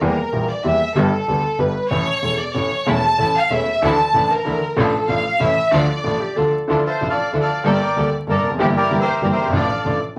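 A lush, bowed violin section opens this sultry, tense tango fragment, its focused, vibrato-rich line sitting up front over an intimate upright piano with woody tone and audible action noise, and a bowed double bass played sul tasto with a soft, floating sound. The violins carry the spotlight until 6.7 seconds, while from 2.9 seconds a dark chamber string section with a gut-string, period-style colour adds stabs from the background. Just before the next section, a mellow, airy silver flute slips in briefly with expressive playing. At 6.7 seconds a reedy, smooth bandoneon takes over the melody up front as the harmony settles into D minor. The rubato feel in triple metre, a wet room ambience and a layer of vinyl crackle lend the recording a smoky, old-world atmosphere.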